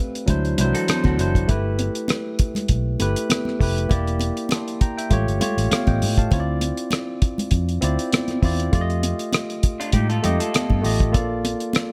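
A close, small-room sound frames this silky, bittersweet snippet of lush 1970s-style soul in D minor at 100 BPM with a gentle sixteenth-note swing, where a barky, bright tine electric piano sits up front over a cloth-damped, thuddy drum kit with a tight kick and rolled-off top, a round, foam-muted fingered electric bass, and soft-handed, high-tuned congas in the background, while a slightly broken-up, lo-fi electric guitar through a small old amp adds a picked riff at 0.7 and again at 9.8 seconds as the chords move through D9, G69, Em7b5, Aaug7, Dm9, F9 and Bbmaj7.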